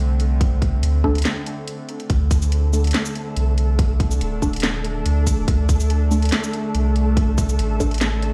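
A tense, string-like drone with a bowed quality and a soft, round dub sub bass open this heavy, meditative deep dubstep excerpt from the start, sitting on a D5 chord, tuned to A4 = 435 Hz. The tempo is 142 BPM in 4/4 with a half-time feel, carried by a tight electronic kick and a garage kit of cracking snare, hats and shaker, both layered and re-recorded in a small room. At 1.0 s a muted, mellow chord stab enters, its detuned sawtooth tone filtered, phased and thrown into dub echo, and a short break follows at 1.3 s. From 2.4 s a faint, flickering granular texture with its own reverb drifts in beneath. The deep sub bass stays up front, while the whole piece rings through a stone room as if played on a big sound system in a bare space.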